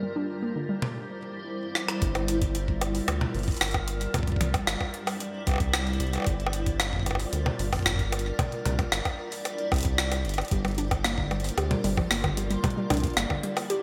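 IDM with an eerie, intricate mood, cut from a longer piece: a blurred, granular cloud pad sustains chords alternating between Cadd9 and Gm7 under a lush chorus and shimmer reverb, a warbling, lo-fi dusty pluck arpeggiates briefly at the start and returns at 10.5 seconds, a gritty, pitched-up jungle sampler-style kit of bongos, hi-hat, rim click and toms sits up front with gated reverb and delay from 0.8 seconds, and a deep, ring-modulated round analog bass joins a thumpy, tape-warm electronic kick at 2.0 seconds, all within a bright 1980s-style digital production.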